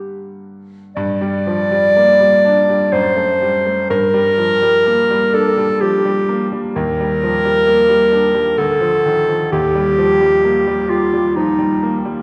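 In a slow, rubato 3/4 that drifts between 47 and 67 BPM, this serene, lyrical romantic duo in G minor sets a clear, classical-style solo clarinet melody out front over a grand piano accompaniment. The piano is brilliant yet worn, with deep bass, and its harmonies move from G minor through F# diminished, Ebmaj7 and D minor before settling on Eb. Both instruments sit up close, while a scoring stage's reverb lends a sense of being heard from further back in the room in this short excerpt, which runs about 12 seconds.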